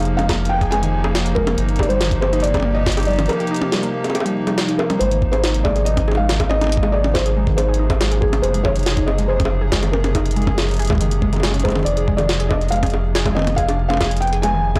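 IDM at 140 BPM in a straight 4/4, this short cut from a longer piece feels playful and wistful, set in Ab lydian and moving through Fm7, Eb/G, Ab and Gb6 before returning to Fm7. A felt-muted upright piano carries the melody, soft and intimate with audible action noise and a boxy tone, trailed by tape echo. Beneath it a hollow, flute-like pad holds slow-attack chords with chorus, while a warbling, lo-fi pluck spins arpeggios through chorus and digital delay, its ring-modulated edge sweeping under a filter. A rubbery, nasal square bass sits up front, bouncy and dark with a moving notch. The jungle sampler-style kit of bongos, hi-hat, toms and a high-tuned snare sounds pitched up and gritty, joined at 0.3 seconds by a thumpy electronic kick, and the whole recording is blown-out and overdriven under a light reverb.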